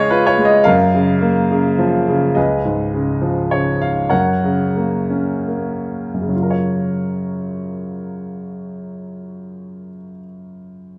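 In a 3/4 with a freely flexing rubato, the tempo drifts between 66 and 109 BPM and slows noticeably from 2.4 to 6.3 seconds. This short excerpt from a longer classical piece is a lyrical solo piano passage in F# major, warm and relaxed in mood. A bright grand piano carries everything alone, sitting up front with a brilliant, open tone across a span from C#2 to F#5. The harmony moves gently between C#7, F#maj7 and F#, settling back onto F#maj7 as the final phrase begins at 6.3 seconds. A moderate concert hall reverb lends the sound a spacious, softly lingering tail.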